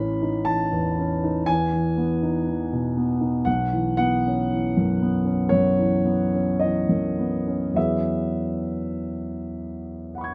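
Hazy and serene, this brief excerpt of impressionist solo classical piano drifts in a free, rubato 4/4, its harmonies moving from A through Emaj7 and Bsus24 to a lingering E69 at 7.8 seconds. A warm concert grand carries everything alone, spanning A1 to G#6 with a deep bass, an open tone and long sustain. Close, detailed microphones place it up front, with light reverb around it.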